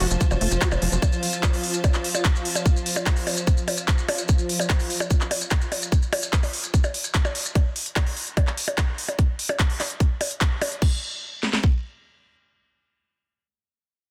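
Alien and intense, this psychedelic trance passage at 147 BPM opens on an F5 chord, with a squelchy, resonant overdriven acid bass riff under a filter sweep and dub echo, and a punchy, nasal sequencer bass, both gone by 1.0 seconds. A bright, morphing wavetable pad with chorus and phaser and a blurred, cloudy granular pad both pump against the beat until 4.3 seconds, while grainy, vintage maracas shake beneath. Two up-front electronic drum kits drive on, one bringing a tight kick and cracking snare and the other smooth, tape-warm hats, handclaps, crash and percussion blips, into a chordless stretch from 10.8 seconds under a dense, heavily limited master.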